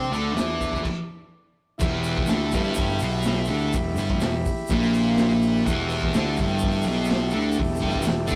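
A thick, double-tracked fuzz guitar sits up front on a D5 chord alongside reedy combo organ chords soaked in spring reverb, a punchy overdriven bass and a grainy shaker tucked in the background, with a raw, saturated garage drum kit of kick, snare, hi-hat and crash arriving at 0.1 seconds. After a stop from 0.8 to 1.8 seconds, this gritty garage rock excerpt drops into E minor at a straight 124 BPM in 4/4, the guitar driving a riff over the organ's sustained chords. The rough rehearsal-room sound carries tube saturation and a moderate stone-room reverb, with the drums' pumping room and rolled-off top adding to the raw mood.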